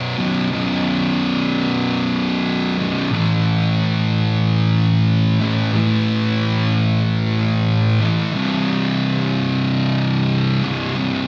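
A straight 4/4 pulse at 92 BPM drives this ominous, heavy metal fragment, where a lone thick, picked electric guitar drenched in fuzz distortion sits double-tracked and up front, grinding from B1 to A3 through B5, then A5 at 3.1 seconds and C5 at 8.3 seconds, all heard as a live gig through the venue's PA with moderate club reverb.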